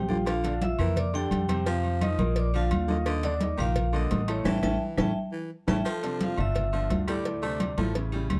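Danceable and fiery, this salsa excerpt in D minor at 172 BPM sets bright, ringing hard-mallet vibraphone with slapback echo and plate reverb over a polished baby grand piano, a thumpy, woody upright bass up front, and a raspy, gritty baritone saxophone second line, while compressed congas, a tight high-tuned cowbell, agogo bells and timbales in the background, and very quiet claves drive the rhythm, a drum fill and band accent from 4.5 to 5.9 s leading into a new section built on Dm7 in a dark production with light reverb.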